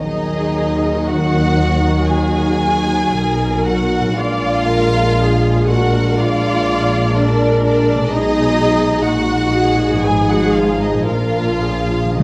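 Over a warm bed of strings, a single round timpani stroke on Eb3 lands close and up front at 12.2 seconds, closing this slow, yearning orchestral passage in Eb minor at 59 BPM with a freely breathing rubato pulse. The symphonic violins carry a focused, smooth-topped melody while an intimate, close studio violin section traces a second line beneath, distant violas add vibrato-rich accompaniment, a tight French horn section holds sustained chords, and a very quiet concert harp rings out thumb-plucked arpeggios. Lush cellos sit in the background alongside soft-attack double basses on the bass line, all set in a moderate scoring-stage reverb as the harmony moves from Ebm through Bb7b9 and B6 to a final Bb.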